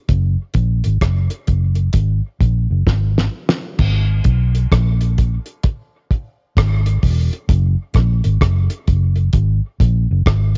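A swung sixteenth-note groove at 65 BPM in 4/4 drives this heavy, hypnotic dub reggae excerpt in G# minor, tuned slightly flat to A4 = 438 Hz, where a round, foam-muted vintage fingered electric bass sits up front in its lowest register beside a dry, cloth-damped drum kit with a fat snare, tight kick, rim clicks, hi-hat and dark crash cymbals, whose fill from 2.9 to 3.8 seconds leads into a new section, all captured in a dull-topped cassette home recording with little reverb.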